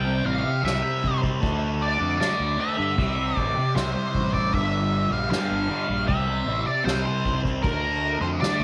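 An up-front octave-fuzz lead guitar carries the melody with wah, distortion and slapback echo, its dark, picked tone sitting above a thick, double-tracked fuzz guitar riff phased and distorted underneath. This is a mysterious, dark psychedelic rock excerpt at 77 BPM in straight 4/4, moving through chords such as C5, D5, Gm7 and Dm, with a round, punchy overdriven bass played with the fingers. A distant, roomy drum kit played with soft mallets joins at 0.3 seconds, its punchy kick, medium-tuned snare and crash cymbal set in light reverb and small room ambience.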